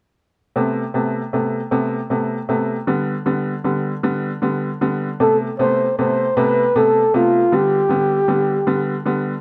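An aching, dramatic pop fragment in a straight 6/8 opens at 0.6 seconds with a bright, woody, slightly detuned upright piano comping low over Amadd9 and G chords, until a dark, whispered flugelhorn enters up front at 5.2 seconds with an intimate, jazz-style solo melody full of vibrato and scooped notes, all set in light reverb.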